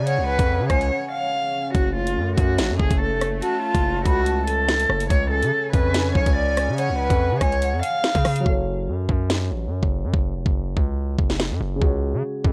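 Drill hip hop at 143 BPM in a half-time feel, this cold, ominous fragment sits in F# harmonic minor and moves between C#sus4 and F# minor chords. A knocking, metallic drill kit with a sharp snare and rim clicks sits up front beside a heavy, saturated 808-style bass whose distorted sine tone carries a noise layer and a fast attack. Over a bright, evolving sawtooth pad with chorus, a close, intimate cello plays the melody sul tasto with light vibrato, while a breathy, hollow concert flute adds a straight-toned second line treated with tape echo. The flute drops out at 8.0 seconds and the pad and cello follow around 8.4 seconds, when a dark, mellow grand piano with audible action noise takes over the accompaniment under a filter sweep during a break that runs to the end at 12.5 seconds. The whole piece is coloured by small room ambience and a worn, warbling cassette character with drifting pitch.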